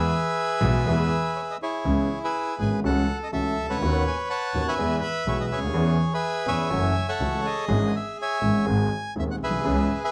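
A dark production with vinyl crackle and a moderate club reverb frames this elegant, passionate tango excerpt in C# minor, moving at 123 BPM in 4/4 with a rubato feel and tuned to A4 = 439 Hz. A reedy, close-miked bandoneon carries the melody up front, while an intimate concert grand piano with audible action noise and deep bass supplies the accompaniment, and a single bowed double bass adds an earthy, biting line with light vibrato from a distant position. After opening on E, the harmony moves at 1.9 seconds through C#m7, F#m7/C# and Badd9/D#, arriving on G# at 8.7 seconds.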